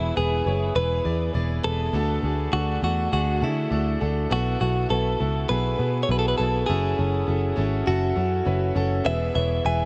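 Piano-driven pop with a driving, dramatic mood, this short cut from a longer piece sets a twangy, bright clean electric guitar melody with a warbly pitch drift over a clear concert grand piano carrying subtle chorus and a dark, round, foam-muted picked bass, all moving through E, D, B7sus4 and F#m7 before landing back on E at 9.1 seconds, inside a dreamy mix soaked in huge ambient reverb.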